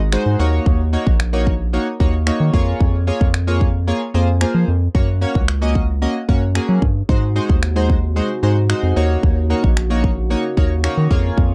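A dry, close 1970s-style studio sound frames this energetic, confident dance-pop excerpt at 112 BPM, where a deep, round analog bass and punchy pop drums of kick and finger snaps sit up front, glossy chorused retro synth keys pump through chords like Ebm7, Gb and Ab7, and a mellow brass ensemble slips in at 7.1 seconds with tight sustained chords in the background.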